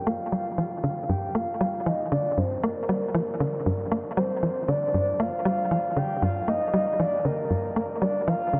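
Soaked in a huge, dreamy reverb that trails on for 8.4 seconds and rolls off everything above 10.9 kHz, this expansive, mysterious ambient fragment at 117 BPM in G minor, tuned to A4 = 437 Hz, pairs a round, dark octave-layered synth lead carrying the melody from Bb4 to G5 with chorus, tremolo and analog delay over a tight, nasal sawtooth-and-square sequencer bass riff between G2 and Bb3, its punchy filter pluck edged with subtle chorus and delay, both held on a single Gm chord throughout.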